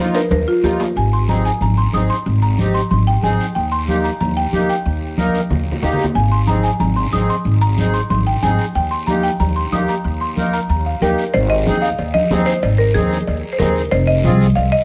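Lightly reverberant and lively, this joyful, danceable cumbia at 185 BPM puts a bright, buzzing hardwood marimba struck with hard mallets on the melody over a reedy, sweet accordion with light tremolo tuning, a growly, woody pizzicato upright bass up front, ringing medium-tuned congas played with soft hands and a raspy, close guiro, while metal-shell timbales and cowbell in the background open with a fill at 0.1 s and return at 11.3 s as the harmony moves from Eb and Ab toward F minor.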